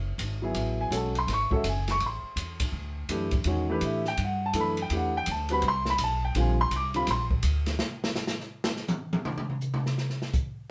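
A thumpy, woody pizzicato upright bass opens this spiritual, searching modal jazz fragment at a swung 166 BPM in 4/4, joined by an airy open drum kit with dark cymbals and a boomy kick and by a natural-sounding upright piano with long sustain, the trio playing live together in a modest room over F#m11, Am11 and A#69 harmony until the piano and bass fall away and the drums take a solo from 7.8 seconds.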